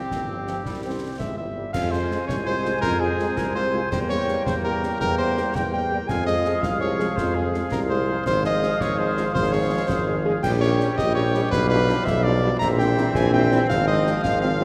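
A military-style march for wind band in 6/8, resolute and stern, with a punchy, smooth-topped cornet carrying the melody up front over a distant woodwind second line with light vibrato, a very quiet, mellow French horn accompaniment, very quiet sustained chords from a bright, close-miked trombone section, a warm tuba bass, and concert snare, bass drum and dark clash cymbals, all heard in the wet reverb of a church or concert hall.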